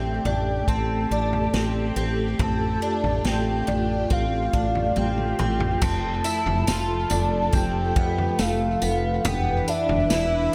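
The recording is bathed in light studio reverb and an echo-heavy mix, lending this dream pop piece an ethereal, floating air at a slow 70 BPM in straight 4/4, set in F lydian. A soft, octave-layered synth lead carries the melody, its round, sub-octave tone colored by chorus, tremolo, vibrato and analog delay. Beneath it a vintage string machine holds sustained violin chords with a shimmering sawtooth glow and a soft attack under ensemble chorus, while a picked twelve-string acoustic guitar plays woody, boxy, octave-doubled arpeggios through analog chorus and delay. A growly, hollow-body fretless electric bass stands up front, and an acoustic drum kit enters at 0.3 s with a punchy kick, medium-tuned snare, dark cymbals, tambourine and toms, marking the change of section with a drum fill from 5.0 to 5.8 s. The harmony moves from Am7 through Fadd9/A to F, arriving at a rootless Cmaj7/E near the close.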